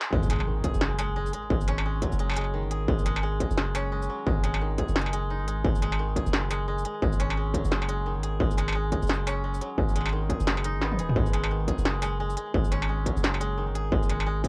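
A distorted electronic kick drives this dark, heavy half-time drum and bass excerpt alongside a deep, mellow 808-style sine bass held up front, an industrial kit of clanging snare, crisp hats, shaker, toms and struck metal, and a dry, woody koto fingerpicked in arpeggios through cassette tape echo, with a very quiet swell and impact opening the drop before the kick falls away for a drum fill at 10.8 seconds, the mix carrying a close, dry home cassette character.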